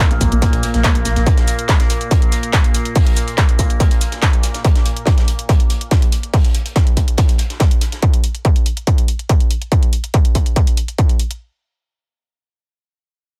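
A dry mix carries this dark, relentless stretch of driving peak-time techno, where a distorted, up-front electronic kick pounds through to 11.1 seconds beneath an overdriven techno kit of handclaps, hi-hat and shaker, while a rolled-off acoustic kit of hi-hat and snare sits in the background in a pumping studio room, a thick, saturated sub bass and a screaming, guitar-like synth lead with a filter sweep flash by in the opening 1.3 seconds, and a detuned, resonant drone with moving overtones stops at 4.7 seconds.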